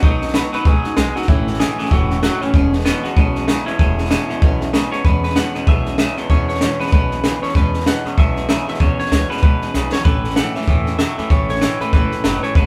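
Upbeat and retro, this rockabilly excerpt swings at 192 BPM in E major, cut from a longer piece and played by a small band live in one room with moderate studio reverb. An electric guitar through a small old amp carries the melody with a slightly broken-up, compressed tone, while a second twangy electric guitar drives a bright, clean riff in the low register. Underneath, a picked steel-string acoustic guitar fills in the accompaniment from the background, and a pizzicato upright bass with gut strings adds a woody, thumpy pulse. A compact cocktail drum kit sits up front with a high-tuned snare, punchy kick and hi-hat, and it throws in a short fill at 9.7 seconds. The harmony moves through B6, A6 and E6, returning to A6 at 10.1 seconds.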